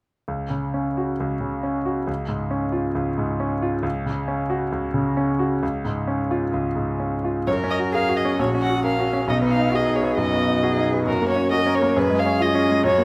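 This quick classical-period movement for piano trio, cut from a longer piece, moves at 134 BPM in 4/4 with a flexible, rubato feel in F# major, and its mood is cheerful and spirited. A bright grand piano opens alone at 0.3 s with accompaniment that sits up front, its brilliant, intimate tone carrying long sustain and some audible action noise. At 7.5 s a single bowed violin takes up the melody, its focused, vibrato-rich sound crowned by a smooth top and placed close to the listener. A bowed cello enters at the same moment with a second line, its soft attack, portamento and expressive vibrato sitting lower in the balance beneath the violin. Harmonies circle around F# and C#, with a brief turn to B, while a moderate recital hall reverb and close, detailed microphones lend the trio clarity and a sense of space.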